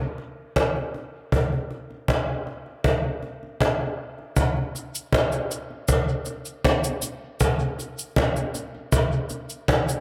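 A woody cajon played with hard hands, its faint snares set up front yet ringing in a large, distant room, opens this deep, meditative reggae passage at 79 BPM in a straight 4/4 break, and at 4.4 seconds a softer, close and dry cabasa joins with a high-passed, egg-shaker and group-handclap character, all within an echo-heavy mix carrying a moderate spring reverb.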